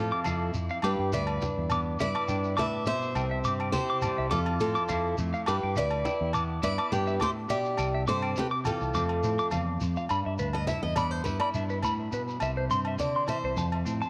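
A picked steel-string acoustic guitar melody, up front, opens this carefree, danceable highlife excerpt at 104 BPM in G mixolydian over a twangy, compressed clean electric guitar accompaniment with subtle chorus and a round fingered electric bass, joined at once by a second clean electric guitar playing arpeggios through spring reverb and tape echo, ringing agogo bells and low-tuned congas in the background and a grainy shekere, all in light reverb, as the chords cycle through Fmaj7, G6 and C and the acoustic guitar takes a solo from 10.1 seconds.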